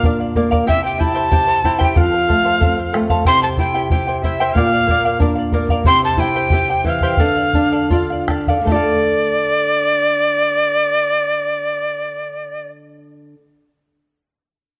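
An airy, up-front cane quena with crisp chiff and expressive vibrato carries a wistful yet festive Andean folk melody in D minor at 74-93 BPM in 2/4, over shimmering double-strung charango, fingerpicked flamenco guitar with audible finger squeak, and a round bombo that stops at 9.0 s, the tempo slowing from 5.9 to 8.7 s in this fragment of a longer piece, all heard through close, detailed microphones in a moderate scoring-stage reverb.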